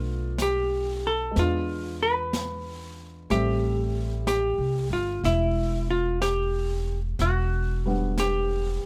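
Jazz ballad excerpt with a melancholic, intimate swing feel, where a clean, picked hollow-body electric guitar carries the melody up front over a baby grand piano whose natural, short-sustained accompaniment lets its action noise show, a woody pizzicato upright bass also placed close, and a brushed kit with a high-tuned snare and hi-hat that enters at 0.4 s, in a dry, closely miked, detailed sound as the harmony moves from Bm7b5 through E7b9 and Am7 to Em9.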